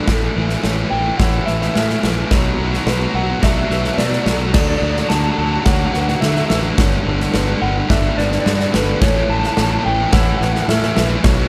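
Cinematic and soaring, this post-rock build-up at 107 BPM drives through A, Bm7, D and G, with a huge arena drum kit up front (punchy kick, bright cymbals), a dark, round fuzz bass, and a bright distorted guitar riff, while a slightly broken-up, lo-fi lead guitar with tape echo carries the melody from 0.9 s, a very quiet twangy guitar picks arpeggios, and a mellow felt-muted upright piano, its action noise audible and its tape echo drifting in the background, adds intimate arpeggios, all in a dry sound.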